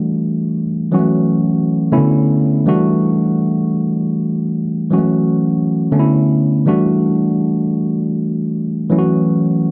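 A dark, lightly reverberant production frames this glamorous, driving disco fragment, cut from a longer piece, where a lone tine electric piano, worn, slightly out of tune and clean through a combo amp, sits up front for the full 9.7 seconds, cycling through Em11, F#m7 and Bm11 chords in the low and middle register.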